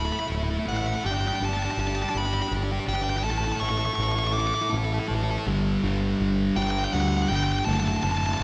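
A wet, hall-sized reverb surrounds this post-rock fragment, cut from a longer piece and tuned to A4 = 436 Hz, moving at a slow 54 BPM in a straight 6/8. Up front, a sludgy, double-tracked distorted guitar riff and a growling, amped electric bass are both picked and overdriven. A dark, smooth lead guitar with its own overdrive carries the melody high above them. The chords pass from Dsus2 through G5 to A5 in a build-up over the first 5.5 seconds, then return to G5 and D/F#, giving a euphoric, cinematic mood.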